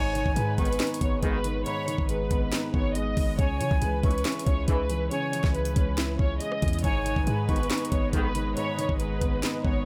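Hip hop in a trap style, this dark, melancholic cut from a longer piece moves at 139 BPM in 4/4 with a half-time feel, sitting in G# minor and shifting from G#m to C#m at 3.4 seconds before returning to G#m at 6.8 seconds. A lush, distant violin section carries the melody with expressive vibrato through a low-pass filter, while a breathy, unsteady jazz flute with lifted highs plays a second line above it, trailed by digital delay. Underneath, a felt-muted upright piano supplies soft, intimate accompaniment with audible action noise, and a deep, boomy 808-style bass with a sine body and fast attack anchors the low end. The up-front trap kit brings a knocking kick, sharp snare, metallic hats, handclaps and rim clicks, and a clear, vintage-toned brass ensemble punctuates the groove with short stabs starting at 0.6 seconds. From 6.8 seconds a smooth, detuned sawtooth pad with chorus drifts in, sitting in the background as sustained chords, all set in a small room ambience.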